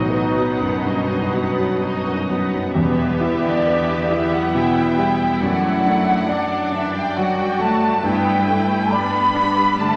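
Drenched in the wet reverb of a scoring stage, this tragic, brooding classical excerpt in a rubato triple metre puts a deep-bassed concert grand piano up front on the melody beside two lush violin sections with vibrato, a clear viola section and a very quiet cello section, while a dark clarinet sounds briefly in the background before a mellow, hollow flute section, a distant double bass section and timpani enter at 2.8 seconds.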